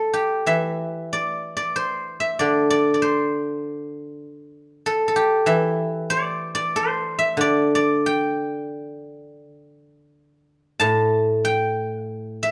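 This is Chinese traditional music for solo plucked strings, a short passage cut from a longer piece with a serene, pastoral mood. A lone guzheng, played with fingerpicks, carries the whole 12.5 seconds, ranging from A2 up to A5 in the G zhi mode, tuned to A4 = 439 Hz. The tempo moves freely between 82 and 100 BPM over a 4/4 metre, giving the playing a loose, rubato feel. Its tone is silvery and ringing, sitting up front in a light reverb. At 10.1 seconds the music moves into a new section, which runs to the end.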